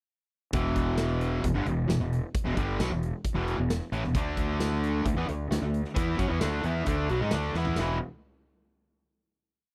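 A straight 4/4 pulse at 133 BPM drives this short, swaggering classic rock piece, where a bright, double-tracked power-chord riff on overdriven electric guitar is doubled by a growly fuzz bass playing driving eighth notes, while a big acoustic rock kit with punchy kick, medium-tuned snare, hi-hat, tambourine, toms and china cymbal lays down a 60s soul groove and a drum fill at 7.5 seconds leads into a final E5 chord at 7.8 seconds, captured in a dry, close 1970s-style studio sound.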